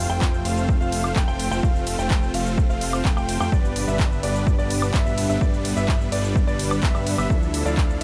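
Euphoric and uplifting, this festival progressive house passage sets huge, detuned supersaw chords and a fat analog bass pumping under sidechain over a punchy, up-front electronic kick, with a big-room dance kit adding handclaps, crisp hats, ride cymbal, shaker and woodblock. A dark, mellow baby grand piano plays high arpeggios through tape echo, while a lush, warbling unison pad holds sustained chords in the background. The harmony moves from F to G at 3.5 seconds and lands on Dmadd9 at 7.3 seconds, all in a dry mix with little reverb.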